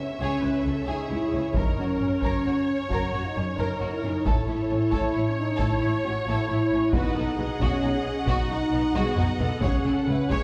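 Rolling in a straight 12/8, this epic, relentless orchestral film-score excerpt opens with a huge, bright impact that is barely audible beneath up-front French horns holding warm sustained chords, while a distant violin section carries a lush, vibrato melody over a second violin line with a smooth top. Violas, a focused cello section and a double bass section fill in the harmony and bass from 0.2 seconds, and a taiko ensemble struck with heavy sticks enters at 1.5 seconds, adding a drum fill at 9.0 seconds. The orchestra sits in a reverberant recital hall, heard from further back, as the chords move from C#m through F#, A and B before returning to C#m.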